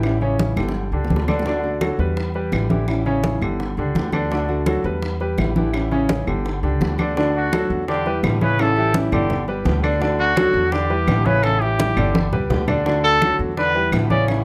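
A 168 BPM Cuban son and guajira groove in D major sets a sunny, warm mood, with ringing congas, round low-tuned bongos heard from a distance and woody claves in the background, drum fills at 0.6 and 12.1 seconds, and a thumpy, dark pizzicato upright bass up front. A clear, polished concert grand plays short-sustained arpeggios alongside a full-bodied fingerpicked nylon-string guitar, cycling through A7, G, D and Em7. At 7.4 seconds a punchy, vintage-toned trumpet enters up front with a light-vibrato pop-style solo, in this short cut from a longer piece with light reverb and close, detailed microphones.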